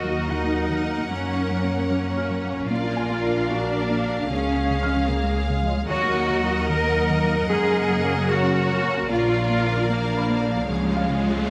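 A moderate scoring-stage reverb lends this tense, vast excerpt of a hybrid orchestral and electronic film score a spacious sheen, as it moves at 75 BPM in 6/8 through Eb minor over a cycle of Ebm, Gb, Bb and Db. Lush bowed strings carry it: a focused violin melody with a smooth top, a distant second violin line, even violas, and up-front cellos and woody double basses holding the bass, while a mellow, roomy French horn section sustains chords far back. A hollow, warbling pad with ensemble chorus and an intimate felt-muted upright piano with audible action noise fill the background, a soft, round, dark pluck plays very quiet arpeggios, and an electronic riser enters at 10.4 seconds.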